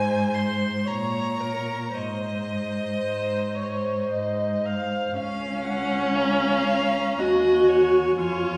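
A smooth, up-front viola carries the accompaniment in this serene, warm, slow romantic string quartet movement in three, cut from a longer piece and shaped with rubato, while a clear, close violin sings the melody with even vibrato, a second violin adds an expressive line with portamento, and a distant cello anchors the bass with gliding portamento, all bowed in a wet recital-hall reverb heard from further back.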